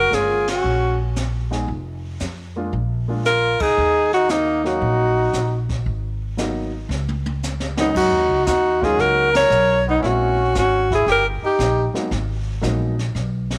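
Heard in a small room with light reverb, this swinging, late-night small-group jazz excerpt puts a clear, vibrato-rich alto saxophone up front on the melody above a mellow trumpet's scooped second line, a woody, thumpy gut-string upright bass, an intimate baby grand piano with audible action noise, and a distant brushed drum kit with dark cymbals and a high-tuned snare, the band striking accents at 0.4 and 9.2 seconds before the horns stop at 11.9 seconds.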